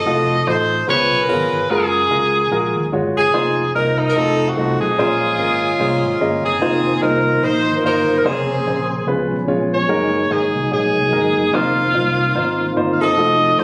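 A clear tenor saxophone and a close-miked saxophone section open this solemn, fervent gospel passage together, carried by a round, amped fingered electric bass and an intimate grand piano whose action noise can be heard. The tempo is a brisk 146 BPM in 4/4 with a swung eighth-note feel, and the harmony moves through dominant, major and minor-ninth colours such as F7b9, Gbmaj9 and Bbm9. The solo tenor has a light vibrato and a roomy, distant sound, yet it sits up front with the jazz-style section beneath it. A soft, flute-like tonewheel organ enters with sustained chords at 6.6 seconds, shimmering through a fast rotary speaker and chorus vibrato. The saxophone section drops out at 9.0 seconds and returns at 13.0 seconds, just before the cut, as the tenor carries on above the band. The whole performance sounds as though it was captured on a phone in a club, with a moderate echo-chamber reverb around it.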